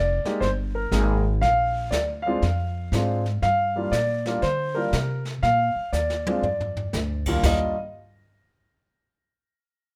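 A relaxed jazz piano trio excerpt swings at 120 BPM in 4/4, with a concert grand piano carrying the melody over chords moving from Fm11 through Bb7 and Gm7 to Bb, its tone open and long-sustaining with deep bass. A woody pizzicato upright bass sits up front beside the piano, while a brushed drum kit with dark cymbals and a boomy kick enters at 0.3 seconds and plays a fill from 5.9 to 6.9 seconds. The trio stops just before 8 seconds, and light reverb gives the studio room a gentle glow.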